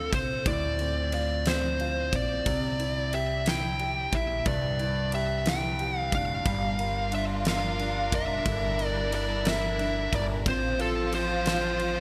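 A dark, fuzzed-out lead guitar carries the melody up front with distortion and delay in this melancholic, dramatic six-eight pop ballad, over a clear, open baby grand piano bathed in lush chorus, a woody, thumpy pizzicato upright bass, and a huge arena drum kit with a fat snare, punchy kick and ride cymbal in gated reverb, while smooth bowed studio strings with vibrato join at 6.5 seconds, all set in a plate reverb with bright 1980s-style digital polish.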